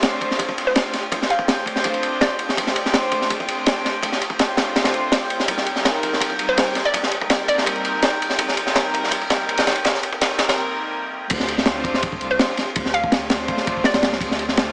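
Drum and bass with a jungle edge, frenetic and dark: a crunchy, gritty breakbeat kit with a punchy kick and high-tuned snare drives up front beneath sustained, reedy gut-string chords, while a glassy drifting texture hovers in the background, a hollow, bouncy square pluck with chorus and dub echo flickers through short melodic phrases, and after a brief break at 10.6 seconds a soft, round dub sub bass arrives at 11.3 seconds for the drop, all wrapped in a plate reverb with a small-speaker tint in this cut from a longer piece.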